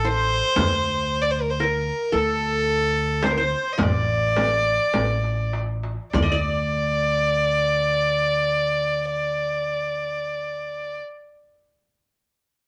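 In a straight 10/8 at 97-118 BPM, this melancholic, longing Arabic maqam ensemble excerpt slows through its opening 6.1 seconds. A close, smooth bowed violin with vibrato carries the melody up front. A bright-edged qanun, played with fingerpicks, adds a second line. A woody, growly pizzicato upright bass anchors the low end. A crisp metal-shell darbuka sits in the background beside a deep, vintage-sounding, band-limited frame drum; a drum fill arrives at 4.9 seconds before both drums drop out at 6.7 seconds, all within light reverb.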